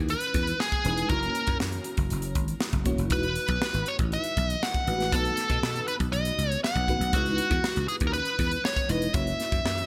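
A bell-like FM electric piano and a dry, thumbed slap bass open this short excerpt of polished 1980s jazz-funk pop, with a crisp fusion drum kit and a nasal lead guitar joining at 0.1 seconds. The mood is urban and breezy, moving at a straight, even pace in four, with the harmony cycling through C#m9, F#7, Emaj9 and B7. Up front, the guitar carries the melody with a parked wah, overdrive and delay, giving it a picked, overdriven edge. The electric piano supplies sparkling, decaying chords treated with tremolo and ensemble chorus, while the bass sounds growly, foam-muted and punchy. The drums sit forward too, with a high-tuned snare, a punchy kick and hi-hat in an airy studio room, their gated reverb adding to the bright digital sheen of the light-reverb production.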